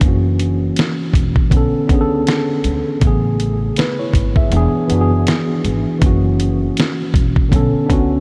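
A worn tine electric piano, a pizzicato upright bass and a dusty, sampler-style drum kit start together at the opening of this dreamy, nostalgic lo-fi hip hop excerpt, cut from a longer piece. The groove sits at 80 BPM in 4/4 with a gentle swing on the sixteenths. The electric piano sits up front, lightly overdriven and slightly out of tune as if heard through its built-in speakers, voicing chords that move from F#7 through Bm9, Amaj9 and E7 before circling back to F#7 and Bm9. Beneath it, the upright bass with steel strings gives a woody, dark low end. The compressed, gritty drums, also up front, pair a thumpy kick with a fat snare and hi-hat, and the whole mix sits in light reverb, tuned to A4 = 439 Hz.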